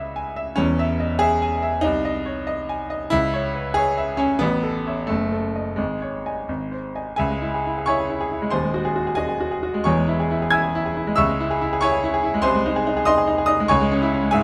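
Moving in a rubato 6/8 felt in dotted quarters at roughly 84-97 BPM, this stormy, passionate passage from a longer virtuoso piano study unfolds in C# minor. A solo baby grand piano carries the whole 14.4 seconds, ranging from D#1 in the deep bass up to G#6, its tone clear and natural with a short sustain. The harmony circles around C# minor, passing through A, a diminished chord and a suspended G# that resolves to G# before the music returns home at 7.2 seconds. The second half leans on G#7 and inversions of C# minor, closing on the tonic chord at 13.7 seconds. Close, detailed microphones place the instrument up front, while a moderate recital hall reverb of 1.6 seconds gives the sound a sense of space around it.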